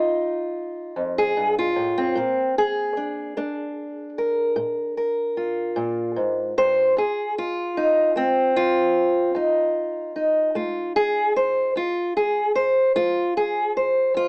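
Acoustic country blues in a rollicking yet laid-back 12/8, this short cut from a longer piece features a lone fingerpicked, ladder-braced acoustic guitar with old strings, its dark, woody, boxy tone sitting up front in a dry, small-speaker sound as it moves from F7 to Bb7 at 2.2 seconds and back to F7 at 7.0 seconds.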